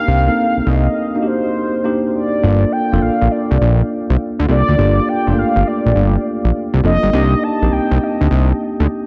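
New jack swing R&B in G minor at 102 BPM with a swung sixteenth feel, this bouncy, punchy fragment from a longer piece sets a round, horn-like synth lead carrying the melody with chorus, vibrato and analog delay over a worn, slightly out-of-tune tine electric piano and a fat, detuned, saturated analog bass that sits loudest in a dreamy mix soaked in cathedral reverb, moving from Cm7 to a Gm9 at 2.4 seconds after a brief break at 1.2 seconds.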